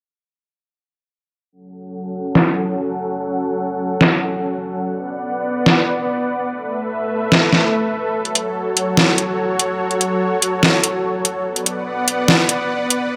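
Heavy wobble dubstep in F# minor at 145 BPM, moving in a half-time 4/4 feel with a heavy, aggressive mood, cut from a longer piece. A supersaw pad enters at 1.5 seconds with sustained chords from F#3 to F#5, its detuned sawtooth unison layered with triangle and a sub octave, giving a lush, bright tone with slow attack and long release that sits up front under a low-pass filter. The dubstep drum kit joins at 2.4 seconds with a deep snare and metallic hi-hats, an electronic, layered sound re-recorded in a small room and placed up front, with low-pass filtering on the snare, hats and room. Filter sweeps run across both the drums and the supersaw synth throughout, while the harmony moves from F#m to Bm, Asus2, back to F#m and then Bm. A moderate, lush hall reverb surrounds the mix, and the drums stop at 13.0 seconds just before the pad ends at 13.2 seconds.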